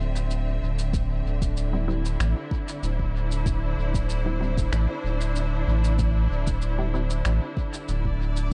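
This ambient dub fragment, cut from a longer piece, carries a deep, meditative mood over a straight 4/4 feel. A clear, lush studio string section holds bowed, sustained chords with vibrato, sounding focused yet distant, while a round sine sub bass sits up front beneath it as the harmony shifts from Dm9 to C/D. Muffled, pitched-down cabasa and finger snaps enter at 0.2 seconds, treated with dub echo and studio reverb, and a tape-warm electronic kick with a small-room character joins at 0.9 seconds. A muted, detuned sawtooth chord stab with a filter pluck, phaser and dub echo appears at 1.7 seconds, staying in the background. The mix is echo-heavy with little reverb and a softened top end, giving the recording a dim, enveloping sound.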